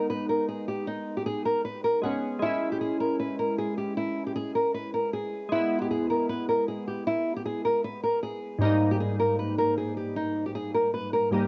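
Hip hop fragment at 155 BPM with a half-time feel in G# harmonic minor, eerie and menacing, where an up-front fingerpicked nylon-string guitar carries the melody over glassy, airy digital keys with a wave-folded sine tone, a noise layer, a filter sweep and chorus, both parts low-pass filtered and given a cassette tape treatment in a home cassette recording with light reverb, as the harmony moves from G#m through C#m/G# and E/G# to D#/G# across 11.5 seconds.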